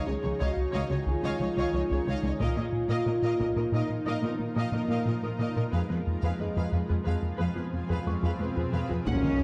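A vast, relentless mood drives this short cinematic passage from a longer hybrid orchestral and electronic film score, moving at 90 BPM in a straight 5/4 across chords of Dbadd9, Bbsus4 and Fdim. A dark, punchy French horn section holds sustained chords over a lush, bowed string bed, with violins on a soft-attacked second line, violas adding expressive portamento accompaniment, and cellos carrying the bass in the background. Electronic layers blend in: a cloudy, evolving granular pad with built-in reverb, a round, tine-like thumb-piano synth pluck playing very quiet arpeggios, and a funky, wave-folded analog bass riff. A felt-muted upright piano adds an intimate, barely present texture from 1.1 seconds, while a distant taiko ensemble struck with hard sticks sounds in the background from 2.4 to 3.7 seconds and returns at 9.1 seconds. An electronic swell builds from 7.5 seconds into an impact at 9.1 seconds, where the violins touch a brief melody, a mellow tuba sounds a single Eb2, and a clear double bass section is barely audible, all in a dark production with a moderate concert hall reverb.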